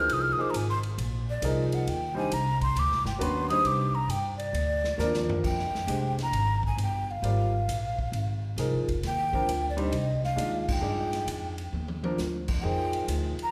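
A breathy, hollow jazz flute opens this modal jazz excerpt up front with a solo line, its crisp, chiffy attack and gentle vibrato set over clear grand piano chords with long sustain and a woody pizzicato upright bass. The mood is hypnotic yet intense, carried by a steady swing feel in four as the harmony moves among minor seventh, minor added-ninth and minor ninth chords. A big-band drum kit with a punchy kick, a medium-tuned snare, hi-hat, ride, crash and toms swings along airily in the background and drops a fill at 5.0 seconds, leading the group into a new section. The band strikes a unified accent at 10.6 seconds, and a second drum fill follows shortly after as the flute keeps its mellow tone high above the steel-strung bass. The whole ensemble sits in a wet recital-hall reverb that gives the polished playing a spacious, church-like glow before the passage breaks off.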